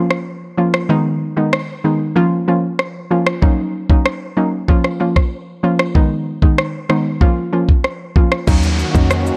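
A straight dancehall groove in four sets a hypnotic, sultry mood, driven by an electronic island pop drum kit with a knocking kick, rim clicks, shaker and crash cymbal sitting up front. From the opening, a soft, round pluck with a dark edge, a touch of chorus and a filter sweep carries the accompaniment, cycling through a moody minor progression of Bbm, Abm and Ebm7. At 8.5 seconds the texture fills out as a punchy, tight 808-style bass arrives in the low register alongside a smooth, warbling vintage pad with detuned chorus and sidechain pumping. An electronic downlifter slips in at the same moment, faint beneath the other parts. Light reverb and a digital ambience give the produced sound a polished finish in this short excerpt cut from a longer piece.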